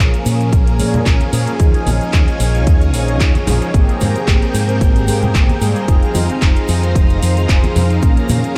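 Groovy and sleek, this nu-disco excerpt moves at 112 BPM in Bb dorian with a light 16th-note swing, cycling through Bbm7, Eb9sus4, Abmaj9 and Fm7. A punchy, up-front electronic kick lands at 0.5 seconds beneath a house kit of handclaps and metallic hi-hats, while very quiet congas and egg shaker add soft hand percussion and a fingered electric bass with an envelope filter carries the low end. Round, detuned synth brass with chorus and diffuse ambient delay plays the accompaniment over a lush vintage string machine holding slow-attack chords that pump with sidechain compression, all set in light reverb.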